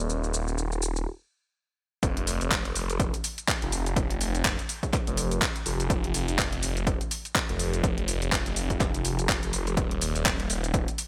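A phased, detuned saw bass sits up front, its thick, swirling unison tone saturated through overdrive and a phaser while sidechain pumping gives it a steady bounce in the low register between Eb1 and F1. This bouncy, gritty bass house clip moves at 124 BPM in 4/4, with a 58% swing on the sixteenths. A garage drum kit of handclaps, hi-hat and shaker runs from the start, its bright hats placed close to the listener. After a brief stop from 1.1 to 2.0 seconds, the drop arrives at 2.0 seconds, bringing in a punchy electronic kick that is overdriven and layered with the character of a large room. A digital ambience surrounds the parts, and the passage is cut from a longer piece.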